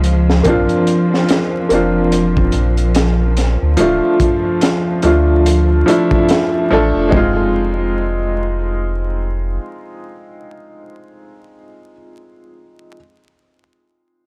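A swung, crunchy breakbeat with a tight kick, high-tuned snare and hi-hat drives this brooding, dark trip hop piece, its saturated tone rolled off at the top, while a round sine sub bass sits deep and up front. A woody upright piano with tremolo and tape echo carries the accompaniment over Bbadd9, Dm and Fm7 chords, and an intense bowed string section holds sustained chords with light vibrato and 12-bit sampler grit until 7.1 seconds. The drums drop out at 7.3 seconds and the bass at 9.6, leaving the piano alone in a dry hardware recording touched with studio reverb and vinyl crackle.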